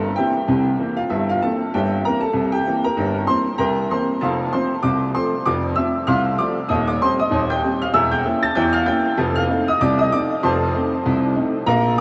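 A warm, boxy baby grand piano opens alone and stays up front through this jaunty ragtime piece in F major at 96 BPM in 2/4, with a light swing on the sixteenths and a tuning slightly above standard pitch. Analog chorus and delay color the piano, while a huge ambient reverb with a 6.7-second tail soaks the dreamy mix. Cut from a longer piece, the lively 12-second passage moves from C7 through F and a diminished chord before settling on F7.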